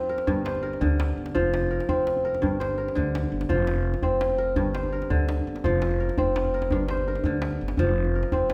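Ringing, crisp fingerpicked kora arpeggios open this reflective, hypnotic West African string piece in a straight 12/8 over close, dry djembe played with soft hands, and a woody, thumpy pizzicato upright bass on gut strings joins at 0.3 seconds up front as the music circles a two-chord cycle in a moderate recital hall reverb.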